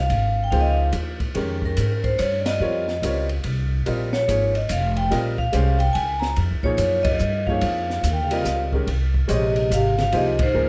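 A cool, searching mood hangs over this short modal jazz passage in a swinging 3/4, cut from a longer piece. Vibraphone carries the melody with medium hard mallets and the motor off, its tone metallic, ringing and airy. A woody, growly upright bass sits up front with a dark pizzicato sound, while an open jazz drum kit plays hi-hat, kick, ride and snare from a small room, pairing dark cymbals with a high-tuned snare and a boomy kick. A clear, smooth upright piano with a vintage character joins at 0.5 seconds as accompaniment, and the harmony moves from Fm9 to Bbm9 and back. At 8.1 seconds a mellow bass clarinet adds a second line with light vibrato and a soft, subtoned attack, while band accents land at 2.4, 7.0 and 10.3 seconds under a light reverb.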